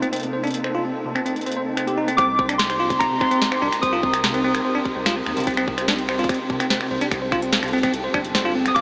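A bright, bell-like tine electric piano plays arpeggios up front through a diffuse ambient delay, beside a booming, overdriven analog drum machine of finger snaps, metallic hi-hat and crisp snare in this glitchy, intricate IDM excerpt at 146 BPM in C dorian, set over a Cm7 chord. A glassy FM pad holds ethereal sustained chords in the background, and a flickering, grainy texture hovers faintly beneath. At 2.2 seconds a tight, tape-warm electronic kick and a round, dark analog bass enter, while warbling lo-fi synth keys with chorus and tape echo add a nostalgic high melody, all within a dreamy, reverb-soaked mix with a small-speaker sound.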